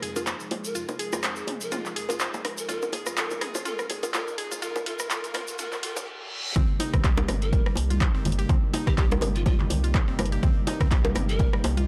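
A dry, gritty recording with transformer saturation and a small-room sheen carries this hypnotic afro house excerpt at 124 BPM in C minor, where a detuned sawtooth pad under a filter sweep, a woody FM mallet pluck arpeggiating through analog delay, a round sine sub bass, an overdriven deep house kit of handclaps, hi-hat, rim click and toms, tight high-tuned bongos, a grainy tube shaker and a breathy, distant pan flute with vibrato and chiff build over Fm7 until a very quiet riser and reverse cymbal lead to the drop at 6.6 seconds, when a punchy up-front kick and bright, thin-skinned congas arrive as the harmony shifts to Cm7.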